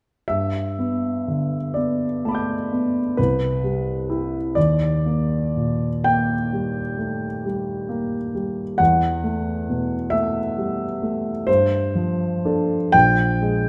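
A warm concert grand piano opens the recording at 0.3 seconds, playing alone in a serene, dreamy impressionist style that feels lifted from a longer classical piece. The tempo is slow, around 43 beats per minute in a lilting 9/8, with uneven beats and a free, breathing rubato. The piano sits up front with a smooth, vintage character and a deep bass, ranging from Bb1 up to G6. Its harmony drifts through rich colors, moving from Gadd9 to Cmaj7, Ebmaj7 and Emadd9 before settling onto G9sus4 and finally a bare Bb7 chord at 12.9 seconds. A moderate recital hall reverb surrounds the instrument, giving the notes a gentle bloom until the piano stops at 13.7 seconds.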